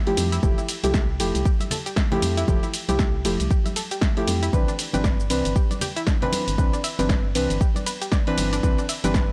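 Sunny and soulful, this short deep house cut from a longer piece moves with a swung 4/4 groove. A deep, mellow chord stab sits up front, its soft, dark tone shaped by a filter sweep, chorus, analog delay and sidechain pumping as it moves from Fmaj9 to Cmaj9 at 4.5 seconds. Beneath it, an organ-like FM bass gives a hollow, percussive low end that pumps with the kick. A round analog pluck spins bright arpeggios further back, carrying its own chorus and delay. The drums pair a layered electronic kick, deep and up front, with a punchy analog drum machine playing cabasa, hi-hat, ride and snare, while soft-handed congas sit in the background. Light reverb and a dry, gritty hardware character give the whole cut a tactile feel.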